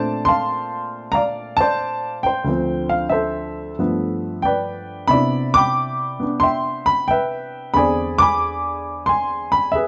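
Warm and playful, this fragment of a solo jazz piece swings at 91 BPM in C major, with a baby grand piano tuned to A4 = 438 Hz and spanning D2 to D6, sitting intimate and up front, its short sustain and audible action noise lending a natural feel as it moves through Bbmaj9, Dm7, G9, Cmaj9 and E7b13, all set in light reverb and a dark production.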